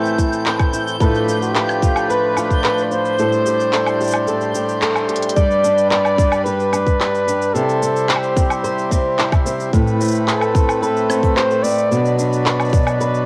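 A straight, steady four-beat groove carries this delicate, intimate folktronica excerpt. A tight, tape-warmed electronic kick sits up front, and an organic electronic kit adds handclaps, smooth hi-hat, shaker and woodblock. The kick drops out at 3.2 seconds and returns after a band accent and a short drum fill, as the music moves into a new section at 5.4 seconds. Underneath, a reedy, breathing hand-pumped harmonium holds sustained chords close to the listener, while a fingerpicked flamenco guitar plays acoustic arpeggios with audible finger squeak, colored by cassette tape and an analog delay. A mellow flugelhorn enters at 1.0 second with a jazz-style solo melody, present and lightly vibrato-tinged. In the opening section, a twinkling granular texture adds a sparkling, octave-up FM shimmer with a soft attack and long reverb-washed release, high above the band. The whole piece has the intimate, homespun character of a cassette home recording in a small room with moderate reverb.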